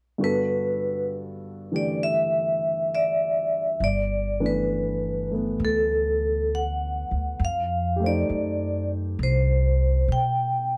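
Swung eighths in a slow 4/4 give this romantic, intimate jazz ballad an unhurried lilt from its opening at 0.2 seconds. A vibraphone struck with medium hard mallets carries the melody up front, its metallic, ringing tone shimmering with a fast motor vibrato. Beneath it, a warm upright piano supplies the accompaniment at a softer level, moving from Gmaj9 to G69 and then F9. At 3.8 seconds a pizzicato upright bass on steel strings joins, sitting close and woody in the low register through to 10.8 seconds. The dry, close sound of a 1970s-style studio, touched with light reverb, keeps this short excerpt from a longer piece feeling personal and near.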